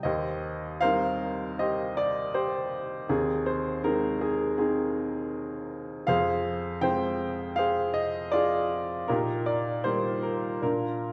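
Wet recital-hall reverb surrounds this 11.1-second fragment of lyrical classical solo piano, where a clear, open baby grand sits up front with long sustain and moves in rubato through melancholic, reflective harmony spanning Eb2 to G5.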